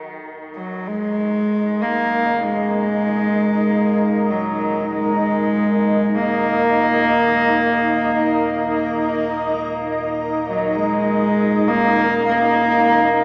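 A bowed cello sits up front, a single player carrying a pure, floating melody with a soft attack, a smooth top and a sul tasto tone, colored by tape echo from 0.6 seconds. Beneath it, a granular cloud pad holds sustained chords in a blurred, evolving haze of detuned sine tones, mellow and steeped in its own reverb. Carillon bells play arpeggios throughout, their bronze, bell-like ringing and close-miked dryness barely audible in the mix. A deep, ominous drone rumbles in the background from 1.1 seconds, its dark, detuned triangle and sawtooth layers treated with analog chorus. At 11.6 seconds a reversed, swelling texture creeps in very quietly, dreamy and granular. This slow, dark ambient drone piece in straight 4/4 feels cavernous, its dreamy mix drenched in cathedral reverb yet heard through a small-speaker sound, and it is cut from a longer work.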